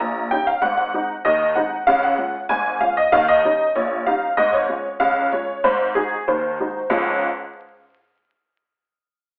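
A detuned, jangly honky-tonk upright piano plays alone and up front for 7.3 seconds in this lively, playful ragtime excerpt at 95 BPM in 2/4 and Db major, moving from Eb7 through Ab, Db and Ab7 before landing on Db at 6.9 seconds, its bright, short-sustained tone set in a stone room's reverb with a live-in-the-room feel, vinyl crackle and a thin telephone-like filter.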